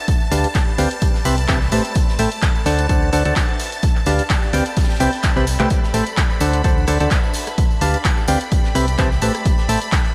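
A punchy, dry analog kick sits up front at 128 BPM in a lightly swung 4/4, joined by drum-machine handclaps, hi-hat and rim click, a very quiet acoustic kit with a small-room snare, and a tambourine in the background, with a drum fill at 5.2 seconds. This energetic, soulful piano house excerpt in A minor is driven by a round FM bass and a hollow, organ-like stab riff with chorus and delay, both pumping against the kick and moving through Am7, D7 and G7/D changes. Shimmering vintage string-machine violins hold sustained chords in the background above a very quiet, bowed chamber string section, all bathed in a dreamy hall reverb.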